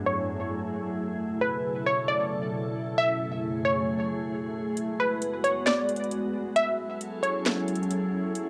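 A light room reverb and the soft grain of a cassette home recording set a hazy, spacious tone in this short cut from a longer atmospheric cloud-rap track, moving at 134 BPM in 4/4 with a half-time feel in F# minor. From the start, a glassy FM pad holds slow-blooming, ethereal chords with long release, thickened by ensemble chorus and its own reverb, while a crystalline, detuned wavetable pluck carries the melody up front with a fast attack, a noise layer and a filter sweep. The pluck sits behind chorus, low-pass filtering, tape color and analog delay, and it falls away at 7.4 seconds. At 4.8 seconds, an electronic trap kit arrives with a sharp snare and metallic hi-hats, its cassette-tape color matching the lo-fi haze. The harmony drifts from F#m7 to B7sus4 and back, then moves through G#m7b5 before returning to F#m7 as the pad carries on to the close.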